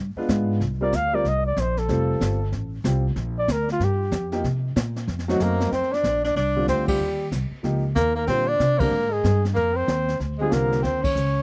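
A woody pizzicato upright bass on steel strings opens this brisk small-group swing and bop excerpt, sitting up front as a baby grand piano with long sustain and a brushed jazz kit with a high-tuned snare and boomy kick fall in almost at once. The mellow flugelhorn soon takes the solo lead, its smooth top and light vibrato colored by a slapback echo. At 5.3 seconds a breathy tenor saxophone enters beneath it with scooped notes and vibrato, adding a lower second line as the harmony moves into a new section. The band punctuates the second half with accents, the first at 6.8 seconds, while the chords favor rich ninths and altered dominants. The mood is sophisticated and warm, and the sound is dry and natural, recorded outdoors with little reverb.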